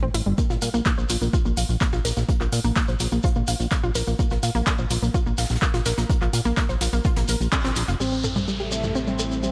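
Melancholic and dark, this melodic techno excerpt rides a straight pulse, with a round, chorused analog pluck spinning arpeggios through a filter sweep and a fat, detuned analog bass, both pumping with the sidechain, over an up-front, tape-warm electronic kick. A punchy analog drum machine adds handclaps, hi-hat and toms, while a soft brush kit sits in the background and a grainy acoustic shekere adds texture, all under light reverb. At 8.0 seconds the music shifts onto an Am7 chord as an airy supersaw melody and an electronic downlifter enter, followed by a lush, phased unison pad and, at 8.8 seconds, a very quiet warbling analog drone.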